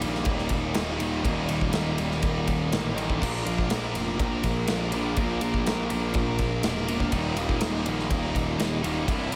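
From the first beat, a big acoustic rock drum kit sits up front in a studio room, with bright cymbals, a boomy kick and a medium-tuned snare, driving this short passage of quiet-loud alternative rock at 123 BPM in a straight 4/4. Three picked electric guitars play riffs together: a bright, biting overdriven guitar, while a crunchy, double-tracked overdriven guitar and a dark, compressed fuzz guitar sit in the background. Beneath them, a picked electric bass, overdriven and fuzzed, adds a growly low end. The harmony moves from Eb to Bb at 3.2 seconds and back to Eb at 7.1 seconds, giving the piece a restless, bittersweet mood. A light reverb gives the mix a touch of space.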